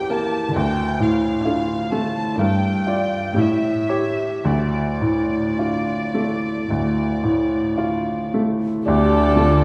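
Classical romantic movement for piano and orchestra, lyrical and passionate with a rubato feel and cut from a longer piece. A bright, brilliant baby grand sits up front carrying the melody beside a warm, intimate violin section bowed sul tasto with vibrato, while dark violas hum in the background, joined by cellos at 0.5 s. At 8.9 s an airy silver flute and a second violin line enter, along with a mellow, distant bassoon and smooth-topped double basses. The sound is set in a wet scoring-stage reverb, heard from further back in the room.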